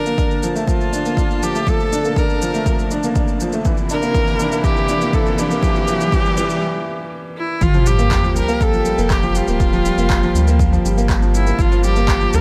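A straight 4/4 pulse at 121 BPM drives this moving, melancholic piano and strings electronica in G dorian, where a clear, focused viola sings the melody with vibrato and digital delay over a woody upright piano riff that also carries delay, a muted, veiled string quartet holding sustained chords in the background, and a deep, round sub bass with sidechain pumping alongside a punchy, overdriven electronic kick and layered shaker and handclaps. A very quiet riser and sub drop sound from 2.1 to 9.6 seconds, spanning the drop at 7.6 seconds as the chords move from Bbmaj7 and C7/G to Gm7, all set in a small room with light reverb.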